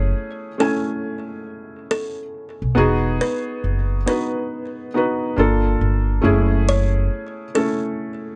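A buzzing kalimba carries the melody in this short, melancholic hip hop excerpt, its bright, hollow plucks sitting just forward in the mix and trailed by a tape echo. Beneath it, a felt-muted upright piano supplies soft, intimate accompaniment with a cassette-tape color, its short notes placed up front. An upright bass plays pizzicato in a low, growly register, woody and close, and stops at 7.1 seconds while the other two parts carry on. The tempo is a slow 69 BPM in 4/4 with a 65% swing on the sixteenths, giving the reflective F# dorian harmony a loose, unhurried sway through F#m7, Emaj9 and Gm7 before settling back on F#m7. Light reverb and a dark, warm production keep the whole mix soft and subdued.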